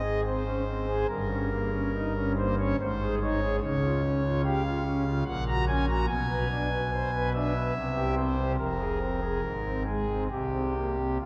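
A solo pipe organ on thick, up-front foundation stops opens this grave, dark classical chorale-style excerpt in 3/4 at 72 BPM with a rubato feel, its romantic voicing spanning F1 to Bb5 as the harmony moves from Ab through Db, a shadowed Bm6 and Fm before settling on a bare C5 at 10.3 seconds, all bathed in a wet church reverb with a 3.4-second decay.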